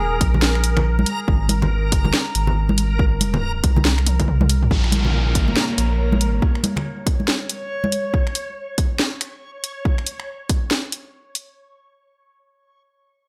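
Light reverb and a digital ambience frame this short, meditative and heavy cut of deep dubstep, moving at 140 BPM in 4/4 with a half-time feel, swung 16ths and a Bb minor key. A soft, round dub sub bass built from triangle and square waves sits up front with tube saturation, while a reversed, granular texture swells high above it, dreamy and bright in its own built-in reverb. The overdriven electronic kick is deep and re-recorded in a large room, and it drives alongside a layered garage drum kit of finger snaps, hi-hat, toms and a cracking snare, both up front with studio reverb, as ringing, close and dry congas trail a dub echo. A drum fill from 4.1 seconds leads to the shift at 4.7 seconds, where the harmony moves from Ab to Bb minor and an electronic downlifter sweeps in. From 5.1 seconds a moody, detuned sawtooth pad with a sub octave and chorus adds full-bodied, evolving chords in the background.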